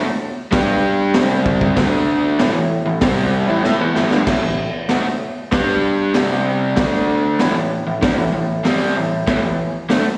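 An overdriven, double-tracked electric guitar with slapback echo leads this rowdy, raw garage rock excerpt at 96 BPM, picking a power-chord riff through A5, G5, C5 and D5. A gritty, saturated acoustic kit enters at 0.5 seconds with a punchy kick and high-tuned snare, playing a fill from 3.6 to 4.3 seconds. A vintage bassoon with a soft attack and light vibrato carries the bass line, all heard as a live gig through the venue's PA in a lush recital hall reverb.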